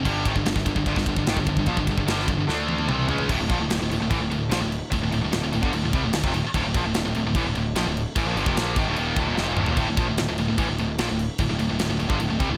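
Two distorted, picked electric guitars open this aggressive, epic heavy metal passage together, one tight and bright, the other heavier and high-gain, both up front over a growly, fuzz-laden picked bass with overdrive. A tight acoustic drum kit drives alongside them with a tight kick, medium-tuned snare, toms, and gleaming crash and ride cymbals in a mid-forward, big-room sound. A drum fill at 2.5 seconds leads into the transition, and another arrives at 9.4 seconds. The opening section shifts into a second passage at 3.3 seconds, all within a small room ambience, as a cut from a longer piece.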